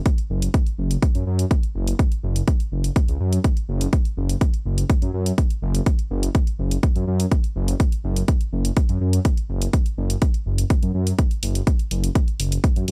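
A deep, rumbling detuned saw bass sits up front with sidechain pumping, alongside a punchy electronic kick and warm, layered hi-hats that also pump, in this dark, driving melodic techno excerpt with a dry, gritty hardware sound.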